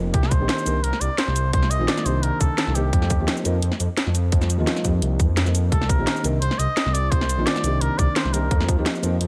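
A cup-muted trumpet carries the melody in a veiled, classical-style voice with a smooth top, playing a phrase from 0.1 to 3.5 seconds and returning at 5.7 seconds, its line trailed by digital delay. This melancholic, lush fragment of liquid drum and bass, cut from a longer piece, sits on a straight groove over Cm9 and F9sus4 chords. Beneath it, a felt-muted upright piano accompanies in a soft, intimate voice whose audible action noise adds a natural touch, and it too carries digital delay. A dark detuned saw bass rumbles low and up front, its unison layers beating with a deep, sustained tone. The drums are tight and produced: an overdriven electronic kick hits hardest, while a kit re-recorded in a small room adds a cracking snare, bright hi-hats and cabasa. Light reverb gives the whole mix a gentle sense of space.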